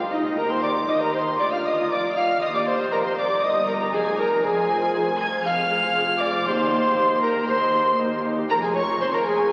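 A dramatic, stormy baroque-style concerto movement opens at once with bowed strings and a delicate fingerpicked lute, and a tenor recorder enters at 0.1 seconds to carry the melody up front. Moving in a straight 4/4 at 118 BPM, this brief passage cut from a longer piece moves through Eb, Bb/D and Fm before reaching Db/F near its close. The recorder is airy and hollow, with a clear chiff on its tongued notes and a straight, close-miked tone. Alongside it, two rich, focused violin sections with vibrato play the melody and a second line, while a lush viola section adds soft-attack, expressive portamento to the accompaniment. Dark, woody cellos and dark double basses with vibrato anchor the bass, and the gut-strung lute, with its double strings and some octave-doubled courses, sits in the background. Everything is bathed in a long cathedral reverb and heard through the crackle of a very old 78 rpm record.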